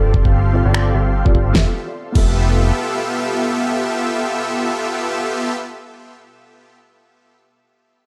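A swung, half-time future bass groove pumps under sidechain compression, with a knocking, tape-warm electronic kick and a pop kit of fat snare, finger snaps and crash cymbal driving the bright, euphoric mood until 2.3 seconds. Huge, lush detuned supersaw chords sit up front through a low-pass filter and digital delay, moving from G9sus4 to Fmaj9#11 at 1.5 seconds, while a thick, nasal analog bass anchors the low end. A soft, round pluck with chorus and delay adds decaying accompaniment, and an ethereal, mellow pad with tremolo and reverb hovers in the background, all within a dark production with light digital ambience in this short cut from a longer piece.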